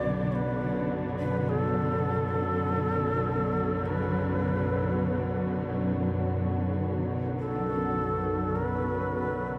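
Ominous and unsettling, this dark ambient drone drifts in free time in B minor, cut from a longer piece and resting on a single B minor chord throughout its 9.6 seconds. Deep underneath, an organ-like drone holds between B1 and F#2, its detuned unison tones colored by ring modulation, ensemble chorus and its own reverb for a slowly blooming, long-fading hum. Above it, a chamber cello section sustains chords from B2 to F#3, bowed sul tasto with vibrato for a woody, shadowed tone that sits up front. The shakuhachi carries the melody between A4 and D5, its bamboo voice breathy and mellow, with a crisp chiff on each attack, vibrato, softened highs and a trail of delay. All three parts sound from start to finish inside a huge, wet reverb with an 8.2-second decay that blurs them into one vast, haunted space.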